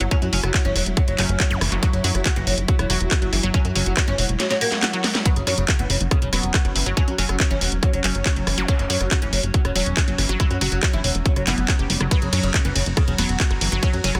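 A tight, up-front electronic kick and a garage kit with a cracking, soft-clipped snare, handclaps, rim clicks, hi-hat and ride drive this intense, alien psychedelic trance excerpt at 140 BPM over an F#5 harmony, under a punchy, detuned analog bass and a woody, fretless oud melody that carries phaser, tape echo and sidechain pumping. Behind them sit a lush unison pluck riff with its own tape echo and an evolving, morphing wavetable pad with chorus and built-in reverb, both pumping against the kick. A drum fill at 4.4 seconds is joined by an electronic swell at 4.6 seconds, brief zaps flicker at 1.5 and 8.6 seconds, and the dense, heavily limited master keeps the whole cut loud and forward.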